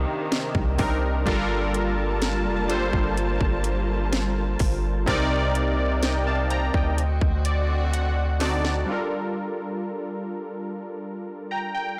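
A blown-out, overdriven digital ambience hangs over this moody, longing contemporary R&B excerpt in G minor at 63 BPM, where round, detuned sawtooth analog keys with chorus and a filter sweep sit up front beside a deep sine 808-style bass, distant, woody bowed strings hold lush chords, and an electronic trap kit of hard-clipped kick, sharp snare and metallic hats adds a fill at 7.9 s before strings, bass and drums drop out around 8.9 s and the keys carry on alone to 12.0 s.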